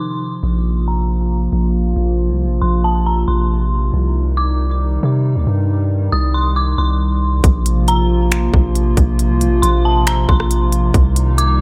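A deep, sine-toned 808-style bass holds long notes from 0.4 seconds beneath a warbling, lo-fi tape-like pad and an eerie, inharmonic synth bell whose melody is softened by chorus, low-pass filtering and tape echo. This floating, dreamy slice of atmospheric cloud-rap moves at 137 BPM in a half-time feel, its nostalgic pad pumping against the beat as a filter sweep runs through the opening stretch over Bbsus2 and Cm chords. At 7.4 seconds a crisp trap drum kit arrives up front, with a hard-clipped kick, hi-hat, rim click and finger snaps, set in a digital ambience.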